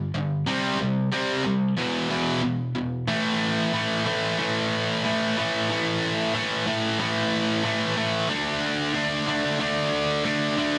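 A bright, overdriven electric guitar, picked and double-tracked up front in a moderate studio reverb, opens this energetic, powerful rock excerpt on its own in straight 4/4, driving through C5 and E5 before shifting at 3.1 seconds to A5 and later D5, all under a dense, heavily limited modern master.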